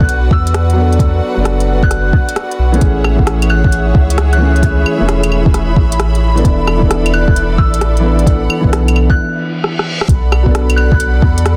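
A soft, pure synth bell carries the melody high above a felt-muted upright piano, whose intimate, mellow tone comes with audible action noise, while a bowed symphonic string section holds biting, lightly vibrato chords and a deep, round sub bass sits up front. This rainy, ghostly slice of future garage moves at 132 BPM in B dorian with a swung sixteenth-note feel, passing through Bm7, Amaj7 and E7sus4 before returning to Bm7. A soft electronic kick and an organic electronic kit of claves, crisp hi-hats and rim clicks drive the groove, with soft clipping on the snare, and the piano, strings and bass pump against the kick. The bell is shimmered by chorus and tape echo, the piano trails analog delay, and the bass gains tube saturation. A very quiet, flickering granular texture drifts in from 3.7 to 9.2 seconds, then a break brings a reverse cymbal at 9.4 seconds and a drum fill at 9.6 seconds ahead of the return to the opening chord. 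The mix is dry, dense and heavily limited, and the passage is cut from a longer piece.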